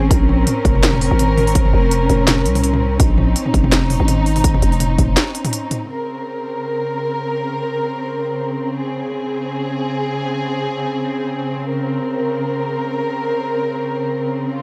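Dark and cinematic, this half-time drum and bass excerpt moves at 166 BPM in Bb minor with a light swing, opening straight into a drop over a Bbmadd9 chord. A dark studio string section holds sustained bowed chords throughout, its sul tasto tone soft in attack and intimate with light vibrato, pumping under sidechain compression. A growling, buzzy 808-style bass sits up front with a fast attack and decaying notes until 5.2 s, joined by a heavy electronic kick re-recorded in a small room. The layered drum kit brings a cracking snare, crisp hats and toms, all low-pass filtered with a tape-warm character, before a brief break leaves the strings alone from about 5.9 s for the rest of the excerpt. The sound is dry and gritty, with little reverb and a hardware character.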